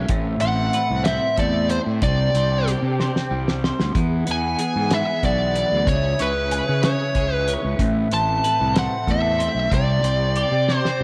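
A slow, straight 6/8 pulse at 62 BPM, felt in dotted quarters, carries this hazy, kaleidoscopic psychedelic rock excerpt. A cloth-damped kit with a fat snare, tight kick and hi-hat sounds thuddy, dry and rolled-off, dropping in fills at 3.0 seconds and again at the close. A bright, twangy twelve-string electric guitar plays a clean, picked riff through a phaser, while a round fuzz bass with overdrive anchors the low end. From 0.4 seconds a dark, distorted fuzz lead guitar sits up front with tape echo, carrying the melody above a soft, breathy flute group whose unsteady vibrato sustains gentle chords. A shimmering, buzzing tanpura drone hovers barely audible until 3.2 seconds, and the harmony moves through Amadd9, Csus2, Eadd9 and C#m before circling back, all in a light studio reverb.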